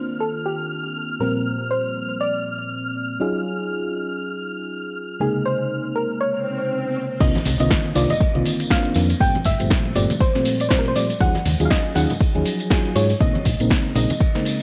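Light reverb and a small-room ambience frame this hypnotic, late-night deep house cut, taken from a longer piece and carried by a swung 4/4 groove. The first section pairs a gentle, round pluck melody dressed in lush chorus and tape echo with up-front stabs from a mellow, full-bodied FM electric piano, which pumps against the sidechain under a filter sweep. A silky, warbling string machine holds a single high note above them until 6.7 seconds, and a background swell leads into an impact as the drop lands at 7.2 seconds. From there a deep, overdriven electronic kick sits up front beside a layered drum kit with a punchy snare and metallic hats, re-recorded in a large room, while faint brushes on ride and snare, a dry, jingly tambourine and ringing congas fill the back. A dark, amped hollow-body electric bass, played with the fingers, pumps with the sidechain beneath a cycle of minor eleventh and seventh chords.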